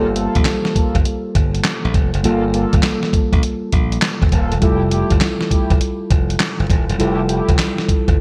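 Gritty, compressed sampler-style drums (thumpy kick, snare, hi-hat and handclaps with gated reverb) enter up front at 0.2 s beside a bright, punchy slap bass in this bouncy, slick new jack swing excerpt, while a clean, mellow tine electric piano with subtle chorus and dark, round synth brass stabs with chorus and delay sit over a swung Gm9 to Fmaj9 progression in a light digital ambience, the brass dropping out at 7.5 s.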